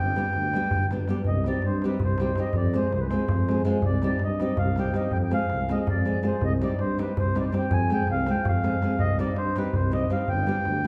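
Balkan folk in the manner of a wedding band, this restless, bittersweet passage moves at 326 BPM counted in eighths in 7/8, opening on G, cycling between Cm and Fm, and returning to G at 10.3 seconds. A reedy, round accordion carries the melody up front while a fingerpicked nylon-string guitar with audible finger squeak supplies full-bodied accompaniment, a mellow, smooth-topped tuba anchors the bass, and a deep clay-shell darbuka struck with hard hands drives the percussion. A wet recital hall reverb places the group further back in the room, and the clip is cut from a longer piece.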